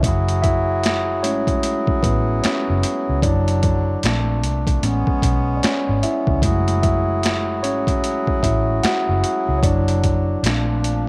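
A mellow tine electric piano takes the lead from the start over reedy, breathing harmonium chords, a dark, round, punchy foam-muted electric bass and an up-front, gritty, overdriven boom bap drum kit with a thumpy kick, high-tuned snare, hi-hat and finger snaps, setting a sultry, smooth R&B and neo-soul groove at 75 BPM with swung sixteenths in F# minor, moving through F#m9, Dmaj7/F#, A#maj9 and Amaj9 under light reverb in this 11.1-second excerpt cut from a longer piece.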